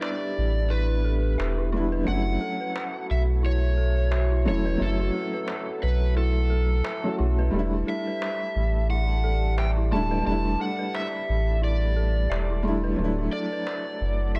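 Trip hop with a melancholic, cinematic mood, this excerpt moves with a swung sixteenth-note feel over a chord cycle from Em7 through F#m7 and A7sus4 to Dadd9. An overdriven electric slide guitar carries the melody, fingered and soaked in tape echo. A clear, woody upright piano supplies accompaniment with tremolo, its slightly detuned, boxy tone ringing with long sustain. In the background, a warbling, nostalgic tape-like pad holds slow-attack chords through chorus and its own reverb, while a dark, detuned FM bell spins eerie, inharmonic arpeggios with chorus and tape echo. A metal-shell darbuka, crisp and distant as if in a large room, plays until 13.8 s, and a round, deep dub sub bass sits up front from 0.4 s. The production is dark and set in a small room ambience.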